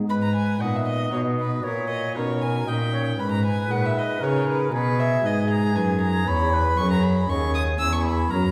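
A hollow, mellow stopped-flute pipe organ opens this serene, dance-like baroque-style sonata excerpt in G# minor at 117 BPM in 3/4, joined at 0.1 s by a nasal, gut-string violin carrying the melody with an airy bow, a soft-attacked oboe with vibrato on the second line, and a rich, reedy cello bass set up front, heard from further back in a reverberant recital hall.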